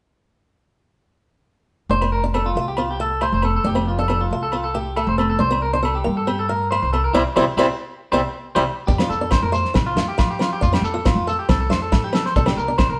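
A danceable, warm highlife guitar band piece at 138 BPM in F major opens at 1.9 s with a boxy, fingerpicked swing-style acoustic guitar, bright, twangy arpeggios on a compressed clean electric guitar, and a woody, thumpy pizzicato upright bass up front, while ringing agogo bells sit in the background. After a band accent from 7.1 s, a cloth-damped, thuddy drum kit with a tight kick enters at 8.9 s alongside a grainy, very quiet shekere. The band plays live in one room with a moderate stone reverb, as the harmony moves between F and C.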